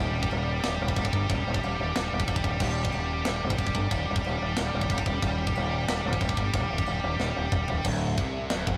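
A bright, double-tracked high-gain guitar riff and a growling, overdriven fingered bass open this relentless, dark heavy metal excerpt at 183 BPM, with a tight, mid-forward acoustic drum kit of kick, medium-tuned snare, china, crash and toms entering at 0.2 s, the rough rehearsal-room sound carrying a moderate booth ambience and warm saturation as the harmony holds on Eb until a drum fill at 7.2 s leads into Dm at 7.9 s.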